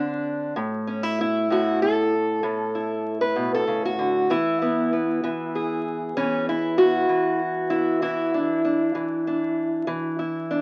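Crackle from a very old 78 rpm record sits over a moderate studio reverb, framing a short fragment cut from a longer piece of acoustic country blues. A lone fingerpicked steel-string parlour guitar plays up front from 0.0 to 10.6 seconds, rollicking and soulful in a straight 12/8, moving through D7, A and then E7 at 4.3 seconds.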